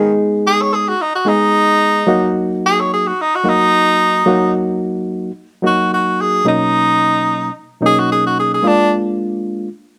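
A straight 4/4 pulse at 110 BPM carries this smoky, soulful blues in Eb minor, a short passage cut from a longer piece and tuned slightly under standard pitch at A4 = 439 Hz. A clear tenor saxophone takes the melody as a solo up front from the start, ranging from Eb3 to Db5 with a light vibrato and a pop-style delivery, and it stops at 8.9 seconds. Beneath it, a barky, reedy electric piano plays the accompaniment through its built-in speakers, bright and lightly overdriven, sitting up front as well and holding on until 9.7 seconds. The harmony opens on Abm, settles on Ebm at 2.1 seconds, moves to Bmaj7 and closes on Bb7. The band plays live in one room, and a moderate studio reverb gives the sound a sense of space.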